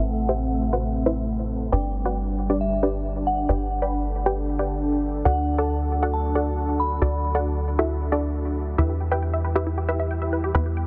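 A euphoric, bittersweet trance excerpt at 136 BPM opens with a detuned unison pluck melody carrying tape echo, a glassy FM bell line with chorus, tremolo and digital delay, a thick chorused and phased pad, and a punchy, dark sequencer bass that drives from up front, all moving through Amadd9, G, D and Em. Filter sweeps run across the pluck, the pad and the whole mix throughout. At 8.8 s a second pluck enters with short-decaying arpeggios coloured by cassette tape and tape echo, while the bell stops at 8.7 s, all set in light reverb within a dense, heavily limited, low-passed master.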